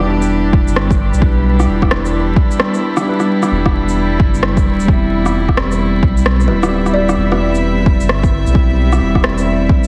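A deep, overdriven electronic kick drum sits up front in this nocturnal, melancholic future garage excerpt at 131 BPM in E minor, joined by a round sine sub bass with tube saturation, a mellow tine electric piano with 12-bit sampler grit and tape echo, and floating bowed strings, these three pumping to the sidechain, along with overdriven shaker and rim click and a breathy wind-like noise layer over an Em7-to-C change, while a woody, hollow kalimba steps in briefly from 6.5 to 7.8 seconds beneath vinyl crackle and a dense, heavily limited master.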